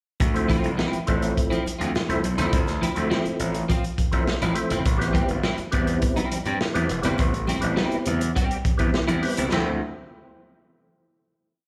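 A tight sixteenth-note funk groove at a straight, mid pace drives this short, cool piece, with a crunchy breakbeat kit sitting up front, its dark cymbals, medium-tuned snare and tight kick saturated and rolled off at the top. A gritty slap bass, overdriven and punchy, plays a syncopated riff anchored on the downbeat with muted ghost notes, while very quiet congas add a ringing, syncopated groove struck with hard hands. A mellow, round tonewheel organ fires syncopated rootless chord stabs with key click, third harmonic percussion, chorus vibrato and a fast rotary speaker, plus a slapback echo. A clean electric guitar, picked and compressed, adds clipped funk chords through ensemble chorus and slapback echo. The harmony moves from Dm9 to Am7 and back, landing on a held Dm9 from 9.5 seconds, all heard as a live gig through the venue's PA with club reverb.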